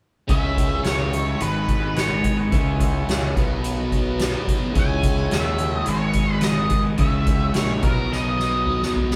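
A moderate stone-room reverb surrounds this brief cut of psychedelic rock, captured as a band playing live together in one room, and the mood is mysterious and trippy. At 107 BPM in a straight 4/4 and C# dorian, the harmony cycles through C#m, G#m7 and Bmaj7. Up front, a bright, double-tracked fuzz guitar drives a compressed riff through distortion and phaser, while a dark octave-fuzz lead guitar carries the melody with wah and tape echo. A growling picked bass, round and overdriven, anchors the low end, and a buzzy vintage combo organ holds sustained chords in the background with heavy vibrato. The soft-mallet drum kit sits forward with a fat snare and boomy kick, closing with a fill from 8.1 seconds.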